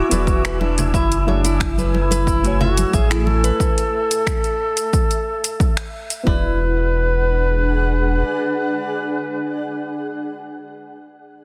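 This earthy, warm stretch of organic downtempo opens with a mellow duduk carrying a folk-style melody up front, its scooped notes and vibrato washed in tape echo. Around it sit a soft, nasal chord stab in the background with chorus and a filter sweep, and a cloudy, granular pad that blurs and evolves, both breathing with sidechain pumping. A fingerpicked flamenco guitar adds arpeggios with audible finger squeak until 6.6 seconds, while an airy, breathy wind-like noise texture hovers behind until 6.3 seconds. Just after the start, a round sine sub bass and a punchy, overdriven electronic kick sit up front, joined by a deep house kit of finger snaps, metallic hats and shaker, and close, ringing congas played with hard hands that drop out at 3.4 seconds. The harmony moves between E9 and F#m9, returning to E9 as the drums fall away and a new section begins, all under a dense, heavily limited modern master.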